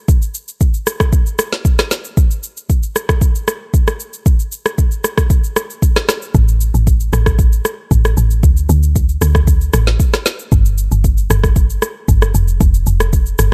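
A deep, round log drum bass with a dark FM tone and a noisy edge arrives up front at 6.3 seconds, its fast-attack notes decaying in the low register in this soulful, late-night amapiano excerpt. Before it, an electronic afro-pop drum kit carries the groove from the start, with a deep kick, a woody snare, rim clicks and shaker, all with a tape-warm character and placed close in the mix. A digital ambience surrounds the straight four-beat pulse.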